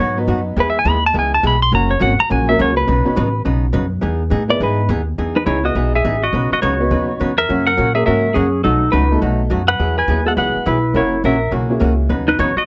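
This is a short cut from a longer western swing piece in the country tradition, swinging and playful at a brisk 208 BPM in 4/4 and in E major, tuned a touch below standard pitch. A clean, compressed lap steel guitar carries the melody up front, played slide with fingerpicks and having a dark electric tone, and its first 5.2 seconds stand out as a solo turn before the music moves into a second section. Underneath, a hollow-body jazz guitar supplies picked, clean accompaniment with its own dark, compressed voice, while a clear upright piano adds boxy, short-sustained chords from 0.2 seconds. The upright bass sits prominently with a thumpy, woody pizzicato sound from gut strings. Light reverb gives the ensemble a little space as the harmony cycles through colorful chords like Badd9, Emaj7, B7 and F#7.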